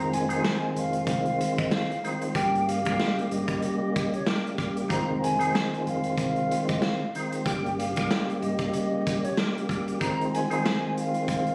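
The recording has a gritty character, captured as if on a phone in the room, with light studio reverb, vinyl crackle and compression over a moody boom-bap hip-hop groove in F minor at 94 BPM, swung on the sixteenths. A crunchy breakbeat kit sits up front, its tight kick, medium-tuned snare and hi-hat sounding saturated and dark with a rolled-off top. A fat, percussive tonewheel organ, also up front, carries the accompaniment with audible key click, chorus vibrato and a fast rotary speaker, given a cassette-tape tint as it alternates between Fm7 and Gdim. Above it, a breathy, mellow silver concert flute plays the melody, close-miked and hollow with vibrato and tongued notes, trailed by analog delay. A deep, round dub bass played with the fingers sits in the background and drops out at 9.0 seconds, while the other parts continue to the end of this excerpt at 11.5 seconds.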